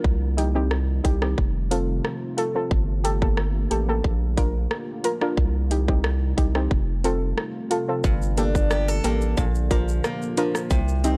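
Sultry and hypnotic, this dancehall excerpt moves at 90 BPM in G minor, cycling through Cm, F, Gmadd9 and Bb over a tight, electronic island pop kit of kick, metallic hi-hats, rim click and shaker, joined up front by a thick, saturated sub bass. A soft, round pluck with chorus and sidechain pumping enters at 0.4 seconds, while a moody, detuned sawtooth pad with its own reverb, chorus and pumping sits in the background. At 8.0 seconds a woody, boxy acoustic guitar with old strings adds picked arpeggios, and the recording has a dry, gritty hardware character with digital ambience.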